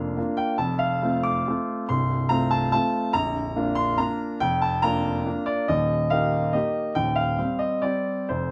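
In a rubato 3/4 that drifts between 123 and 151 BPM, this playful, sparkling classical piano waltz in Bb major is a brief 8.5-second fragment of a longer piece: a solo baby grand with a clear, open tone and long sustain, sitting up front through close, detailed microphones and light reverb, ranges from Bb0 to D6 as the harmony moves from Bb through F and Eb to Cm/Eb.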